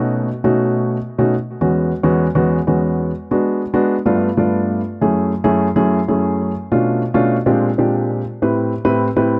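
A straight 4/4 pulse at 141 BPM drives this short, sunny and danceable jazz piece, cut from a longer performance and tuned to A4 = 442 Hz. A lone baby grand piano carries everything, covering E2 to F5 with a dark, mellow voice, short sustain and the audible clatter of its action. It sits up front with an intimate, natural presence, and a touch of tape echo trails its notes. The harmony moves through rich extended chords, opening on B9 and passing through E69, G9, F#m9 and A#13 before settling on Am9. A brief piano fill arrives at 4.0 seconds and runs until 4.8 seconds. The sound is dry and close, in the manner of a 1970s studio recording, with only a short, moderate booth ambience around the instrument.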